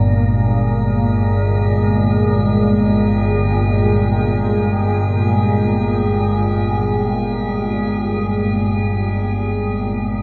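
In free time, this unsettling, desolate dark ambient drone fragment sets a calm, detuned organ-like drone up front in the low register beside an eerie, warbling metallic FM texture with chorus and phaser, while a deep, moody sawtooth pad with a moving notch sits dark in the background and fades out over the full 10.2 seconds, all suspended on a single Fmadd9/G chord inside a huge ambient reverb.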